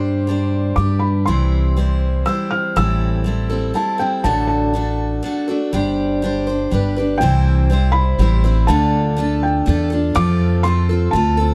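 In a straight three-beat metre, this short, pastoral acoustic folk passage sets a felt-muted upright piano's soft, mellow melody high in its range, its thick felt and audible action noise giving it a dark, intimate hush. A bright, freshly strung steel-string guitar sits up front with picked accompaniment, while a woody, thumpy pizzicato upright bass anchors the low end, all three playing throughout the 11.5 seconds. Captured with close, detailed microphones and little reverb, the harmony moves from Gsus4, G, C and Am7 to a new passage at 7.2 seconds that turns through C, Dm and F.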